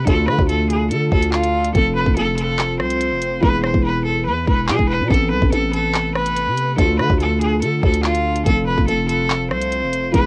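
A half-time drill groove at 143 BPM, built on a knocking, tape-saturated kick with hi-hat, handclaps and rim click (the hats drop out from 3.4 to 5.1 seconds), sets a cold, tense hip hop mood beneath a growling, buzzy 808-style bass, a biting, nasal bowed cello carrying the melody up front with light vibrato and tape echo, a soft felt-muted upright piano in a dark, intimate register, and a warbling, detuned lo-fi pad with chorus and reverb sustaining chords in the background, all captured as a cassette home recording with light room reverb over a Dm, F, E, Amadd9 progression.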